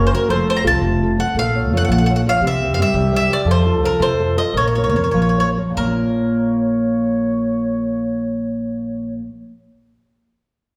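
Opening together, an up-front bowl-back mandolin picks a wistful, passionate melody on double strings over a dark, fingerpicked nylon-string guitar, a thumpy, gut-strung pizzicato upright bass and a pure baroque flute with vibrato carrying a second line, an Italian folk serenade in 6/8 that slows from 3.5 to 5.8 seconds before its second section, ringing in a recital hall's reverb in this fragment of a longer piece.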